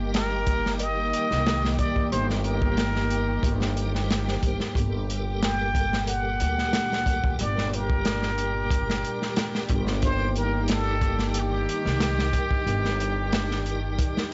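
A close-miked trumpet with a plunger mute carries the melody up front, its wah-wah tone touched by light vibrato and tape echo, over a hypnotic, smoky trip hop groove at 91 BPM in 4/4. A saturated breakbeat kit with a tight kick and a woody, growly pizzicato upright bass sit forward, while dark, sul tasto chamber strings hold soft-edged chords and a lightly overdriven tonewheel organ with key click and slow rotary speaker hums in the background, moving between Eb/G and Gmadd9. From 5.3 s a very quiet, reversed, detuned texture swells in, and the recording has a dry, gritty sound with a rolled-off top.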